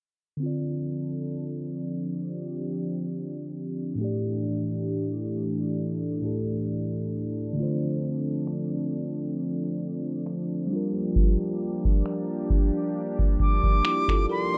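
This short clip from a longer piece has the rough, low-passed feel of a home demo, set in digital ambience with a filter sweep running throughout. It is late-night, sensual contemporary R&B in 4/4, with a gentle swing on the sixteenths. From 0.4 seconds, a bell-like tine electric piano and a warm analog pad carry the harmony together, moving through Dm7, A7sus4, back to Dm7 and then Gm7. The pad sits up front with slow-attack, detuned sawtooth and triangle tones that warble under a lush chorus, while the clean piano chimes beside it. At 8.5 seconds a booming analog drum machine arrives with a deep kick and finger snaps, its electronic punch given a small-room character. At 13.4 seconds a reedy concert flute enters high in its range with an airy, soft-attacked vibrato line trailed by delay, just as the clip closes.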